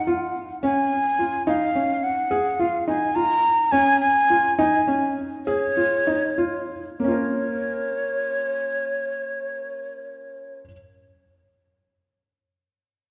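A breathy, hollow jazz flute carries the pensive yet urgent melody up front over felt-muted upright piano arpeggios with a boxy tone and audible action noise, both set in a long concert hall reverb in this contemporary instrumental fragment in 11/8 that slows between 2.3 and 7.0 seconds before settling on a minor chord.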